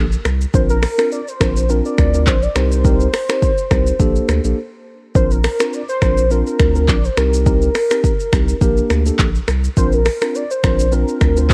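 A worn, warbling cassette-tape sound with little reverb wraps this joyful, romantic afrobeats excerpt at 104 BPM in Bb major, where a velvety, detuned sawtooth synth lead with chorus, delay and vibrato carries the melody over a mellow tine electric piano, a thick saturated sine sub bass and an overdriven, up-front afro-pop kit of deep kick, smooth hats, rim clicks, shaker, finger snaps and handclaps, with a brief break at 4.6 seconds amid chords moving from Bbadd9 through Cm7 to Gmadd9/Bb.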